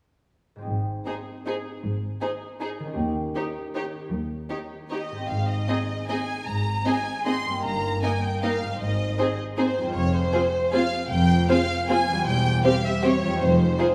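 A ringing, fingerpicked concert harp opens this elegant, festive classical passage in 3/4 with arpeggios at 0.6 s, joined at 0.7 s by a dark, woody cello section in the background and a focused, close double bass section holding the bass, then at 1.1 s by an up-front, expressive violin section carrying the vibrato melody over a smooth-topped second violin line and a distant viola section's accompaniment, the beats uneven and elastic with rubato and the whole ensemble set in a wet scoring-stage reverb.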